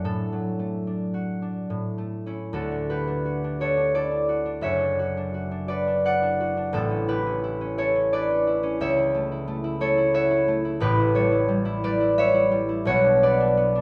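A bright, ringing concert harp plays alone and up front, fingerpicked across a broad span, in this serene, dreamy classical solo piece in D major and 3/4, moving with rubato at 70-92 BPM, tuned to A4 = 441 Hz, and set in a moderate recital hall reverb as its harmony settles from D/A onto A and then opens at 2.5 s into a gentle progression through D, D/F#, A, A/C# and A7 before coming to rest on Bm as the piece is cut off.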